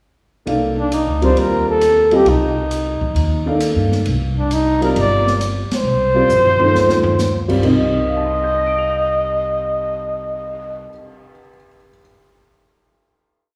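A breathy, whispered trumpet sits up front, playing a motif-based melody in song-like phrases with vibrato and a soft attack, close and intimate over a brief modal jazz piece in C dorian with a cool, spiritual mood. The quartet swings at 134 BPM in 4/4, opening on a Cm9 chord at 0.5 seconds, with the trumpet entering just after at 0.8 seconds. A dark, mellow upright piano comps in syncopated quartal voicings with long sustain and audible action noise, while a woody pizzicato upright bass on steel strings holds down a two-feel. The open jazz drum kit is airy and polished, with a ride cymbal pattern played with sticks, dark cymbals, a high-tuned snare and a boomy kick, and it adds a drum fill from 6.3 to 7.2 seconds after a band accent. The piece closes on a final chord from 7.6 seconds, the piano ringing on alone until 12.0 seconds, all of it set in a wet scoring-stage reverb.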